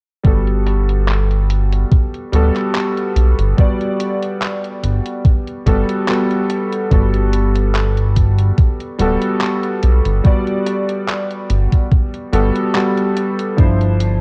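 A faded, woozy vaporwave fragment, cut from a longer piece, drifts along in a loosely swung 4/4. A vintage electric grand piano carries the accompaniment up front with a clangy low end, its tone colored by analog chorus and analog delay as it rests on a Gmaj9 chord before turning to Dm9 near 13.6 seconds. Beneath it, a glossy, nasal synth bass built from pulse and sawtooth waves plays low notes with a filter pluck, a fast attack and a sustained, chorused tail. An overdriven, thumpy electronic kick, re-recorded in a large room, sits prominently in the mix until 13.8 seconds, while a detuned 8-bit drum machine adds handclaps and low-pass filtered hi-hats further back. The whole production has a dark, cassette-tape haze within a digital ambience, moving from a first section into a second at 6.9 seconds.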